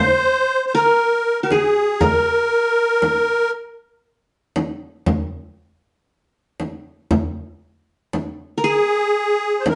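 Arabic maqam ensemble in 10/8 at 118 BPM counted in eighths, with a hypnotic, melancholic mood, cut from a longer piece. An up-front musette accordion carries the melody with a reedy, shimmering voice, while a plucked, bright-edged qanun with triple strings plays a second line alongside it, and a deep, close frame drum struck with hard hands enters at 1.5 seconds. The band plays live in one room with a wet studio reverb, and the sound tops out around 11.0 kHz.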